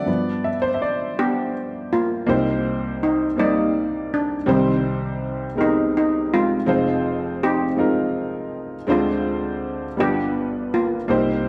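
A shimmering steel pan carries the melody in this uplifting, reverent gospel piece, its low cello pans struck with hard rubber sticks for a dark, smooth, metallic voice placed up front. An intimate upright piano opens the passage alone and provides the accompaniment throughout, woody and slightly detuned, with its action noise clearly audible. The pan enters at 1.2 seconds, and the music moves at a slow 54 beats per minute in a straight 6/8. The harmony travels from G7 through Cm7, Abmaj7/C, Fm7 and Dm7b5 before returning to G7 near 10.0 seconds. A reverberant recital hall surrounds both instruments, and the overall production is dark and warm. The passage is cut from a longer piece.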